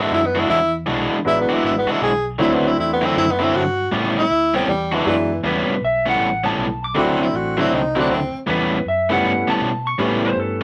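A swung 4/4 electric blues shuffle, gritty and swaggering in this cut from a longer piece, opens with a breathy, intimate tenor saxophone solo over a bright overdriven stack guitar riff, woody upright piano and a round, foam-muted fingered bass, before a dark, lo-fi electric guitar through a small old amp takes the melody at 5.5 seconds with a warbly pitch drift while the saxophone drops out at 8.4 seconds, all in a moderate studio reverb over ninth chords.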